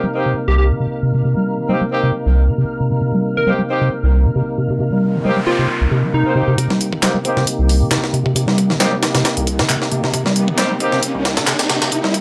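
A rubbery, resonant acid bass riff drives this energetic, swaggering breakbeat excerpt in C minor at 135 BPM, its filter sweeping throughout while cassette-tape character and digital delay color it. Beneath it, a fat tonewheel organ with key click and slow rotary speaker pumps sustained Cm7 chords, smooth-topped horn stabs sit behind a low-pass filter, and a punchy, detuned unison lead with a telephone tone flicks in twice in the first half as a noise sweep and riser rise in the background. At 6.6 seconds a gritty, pitched-up sampler drum kit with a thumpy kick and high-tuned snare lands up front, layered electronic handclaps join at 7.0 seconds, and a filter sweep on the horns carries the build-up to the cut at 12.2 seconds.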